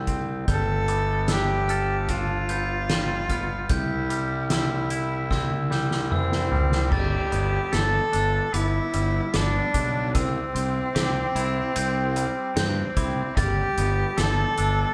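Post-rock at 74 BPM in a straight 4/4, this euphoric, cinematic excerpt from a longer piece features a band playing together in one room with moderate studio reverb, where a rich, nasal bowed cello carries the melody up front over chords moving between Gadd9 and C. Beneath it, a growly, punchy fuzz bass with overdrive and a soft-mallet drum kit with a fat snare and boomy kick sit forward, while a twangy, clean guitar and a bell-like, vintage glockenspiel played with soft plastic mallets weave arpeggios in the background. A drum fill from 5.3 to 6.9 seconds leads into the second section.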